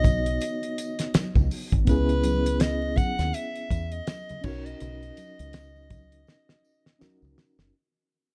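A clear, close-miked soprano saxophone with jazz vibrato sings a bittersweet, cinematic melody over a reedy electric piano with fast tremolo, a round, foam-muted dub bass, an up-front dry drum kit with a fat snare and tight kick, bright congas in the background and a very quiet jingly tambourine in this lush, dark 1970s-style soul excerpt at 82 BPM with a 16th-note swing, moving through G#m9, C#m9 and Bmaj7 as the whole fades out and a drum fill arrives at 6.3 seconds.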